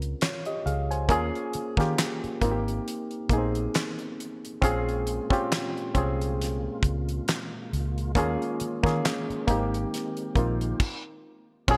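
A bright digital production with a moderate plate reverb gives this short neo-soul and R&B fragment, cut from a longer piece, a late-night, introspective mood, tuned to A4 = 444 Hz and carried by a gently swung sixteenth-note feel in 4/4. Up front, a reedy, barky electric piano with light overdrive and subtle chorus, heard through its built-in speakers, plays the accompaniment, moving through Bbm9, Eb9sus4 and Abmaj7 chords. Beneath it, a vintage muted fingered electric bass sounds round, punchy and foam-muted, while a damped 70s drum kit, dry and also up front, pairs a fat snare and tight kick with dark cymbals, hi-hat, crash and handclaps. At 4.6 seconds a mellow, percussive tonewheel organ enters in the background with sustained chords, its third-harmonic percussion, chorus vibrato and slow rotary speaker adding a soft, clean shimmer. The organ drops out at 10.8 seconds, when the band stops together before the fragment ends.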